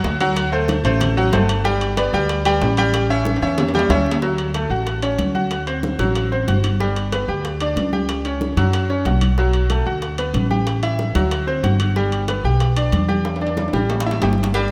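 A straight 4/4 salsa groove at 186 BPM drives this sunny, festive excerpt in D major, cut from a longer piece. Congas with thin skins and soft hands sit in the background, while tight, high-tuned bongos and cowbell struck with hard hands stay very quiet, and compressed, saturated timbales and agogo bells ring out with a metal-shell edge. Up front, a woody pizzicato upright bass on steel strings anchors the low end. A bright, worn concert grand piano with audible action noise and deep bass carries the accompaniment through changes such as D7, G and A7, later passing through Dmaj7, Bm7 and Em7. Drum fills arrive at 3.3 and 13.3 seconds, and the rough home demo mix sits in a lush hall reverb.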